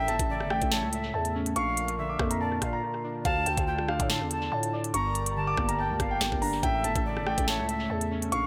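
Over a half-time drill groove from an up-front electronic kit with knocking kick, sharp snare, crisp hats and rim clicks, a growling, buzzy 808-style bass sits beneath a dark, mellow grand piano melody and an airy, distant jazz flute second line, both trailing dub echo, while warbling lo-fi synth keys with chorus and phaser and a smooth, detuned vintage analog pad fill out this tense, shadowy hip hop excerpt, which has a brief break at 2.8 seconds.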